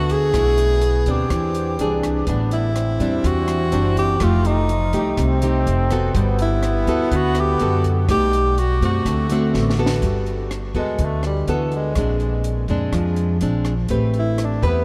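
A straight 4/4 bossa nova groove at 124 BPM, set by a compact, dark cocktail drum kit with a high-tuned snare, rim click and rolled-off top, and a woody, thumpy pizzicato upright bass, carries this romantic, sophisticated passage from a longer piece, where a fingerpicked nylon-string guitar with subtle chorus sits up front through chords such as Bm7, E7alt and Gmaj9, a breathy, subtone tenor saxophone with vibrato, scooped notes and delay sings the melody over a warm trombone second line in the background until a drum fill at 9.5 seconds leads the saxophone into a solo from 10.0 seconds, all in a small room with light reverb.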